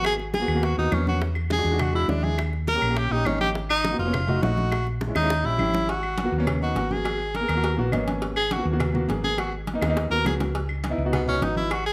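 A breathy, scooped tenor saxophone solo with vibrato and plate reverb opens this sultry, sophisticated Afro-Cuban jazz excerpt, set over a warm baby grand piano with short sustain, a dark, round hollow-body electric bass up front, tight high-tuned bongos and cowbell, bright thin-skinned congas and distant woody claves in the background, with drum fills at 5.0 and 9.8 seconds and a brief piano fill at 7.8 seconds.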